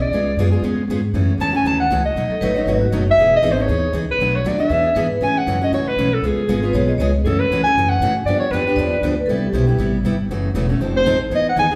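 A clarinet and upright bass open this lively, swinging gypsy-jazz excerpt together, with the picked steel-string acoustic guitar joining a moment later at a brisk 236 BPM in E major. The clarinet carries the melody up front, its tone punchy and forceful with a jazz vibrato, yet it also sounds distant and roomy in the reverberant space. Beneath it, the pizzicato upright bass gives a dark, thumpy, woody pulse on gut strings, while the concert guitar sits forward with a bright picked accompaniment. At 2.3 s a hard-mallet vibraphone adds a metallic, ringing second line with medium motor vibrato, playing until 9.9 s. The harmony moves through jazzy changes such as C#7b9, Emaj7, G7 and Cmaj7, and the whole band sounds as though it is playing live together in one large, wet-sounding studio room.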